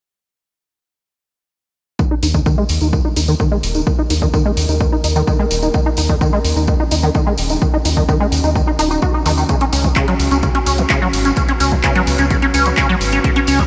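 Acid house cut from a longer piece, hypnotic and driving, where a squelchy, resonant acid bass riff with tube saturation, chorus and diffuse delay sits up front, sweeping its filter, over a punchy, tape-warm kick, a small-room analog drum machine of handclaps and hi-hat, a jingly close tambourine and a round, deep sidechain-pumping bass, while a moody, warbling pad enters in the background at 3.7 seconds and the whole mix sits soaked in dreamy reverb as the harmony moves from Ebm7 to Db5.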